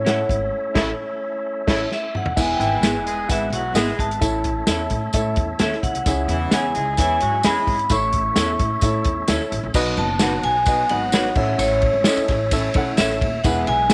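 A ringing, metallic vibraphone struck with hard mallets carries the melody through this uplifting excerpt of uptempo 1960s-style soul, moving at 130 BPM in a straight 4/4 and tuned slightly below standard pitch, to A4 = 437 Hz. Up front sits a dry, punchy soul drum kit with dark cymbals and a medium-tuned snare, and it rolls into a drum fill as a band accent in the opening seconds draws to a close. Beneath it, a woody, growly upright bass thumps out the low end, while a smooth, vintage upright piano with short sustain fills in the harmony over chords that move from A to E, C#m and B. Further back, a thick, lightly overdriven tonewheel organ holds sustained chords with key click, chorus vibrato and a fast rotary speaker, and a twangy, slightly broken-up electric guitar through a small old amp adds picked stabs. A clear horn section plays a second line with vibrato from 0.8 to 7.8 seconds, and a jingly, close tambourine joins at 2.4 seconds, all set in light reverb and small room ambience.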